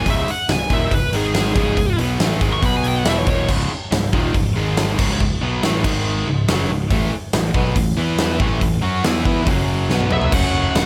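Hard rock with a heavy, menacing mood, where a dark, bluesy overdriven lead guitar solos over two bright, double-tracked distorted rhythm guitars (one tight and picked, the other compressed and set in the background), a round, overdriven picked bass and a punchy, up-front acoustic drum kit with bright cymbals, before the solo stops at 3.5 seconds, a drum fill arrives at 9.9 seconds and the lead returns briefly at 10.1 seconds in this cut from a longer piece with small room ambience.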